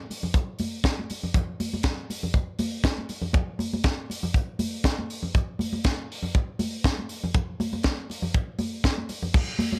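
A dry recording with little reverb carries this joyful, glamorous disco clip, cut from a longer piece in a straight 4/4. Up front, an acoustic funk drum kit with a small-room, mid-forward sound drives the groove from the opening moments, its punchy kick and high-tuned snare joined by hi-hat and crash cymbal. Sitting lower in the mix, bright, high-tuned congas with a thin-skinned snap, struck with hard hands, play throughout until 9.8 seconds.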